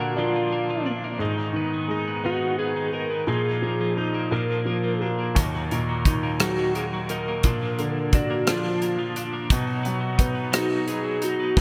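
In a slow, straight 6/8 at 58 BPM counted in dotted quarters, this aching, melancholic pop ballad moves through Bb, Abm and Ebm harmonies. A clean lap steel carries the melody with fingerpicks, slide and volume swells, its warm tone treated with analog chorus and digital delay. Beneath it, an intimate grand piano with audible action noise plays accompaniment, and a bright, twangy twelve-string electric guitar adds tremolo-tinged arpeggios. A polished, airy drum kit with a tight kick and medium-tuned snare comes in up front at 5.4 seconds, all set in a lush hall reverb with bright 1980s-style digital production.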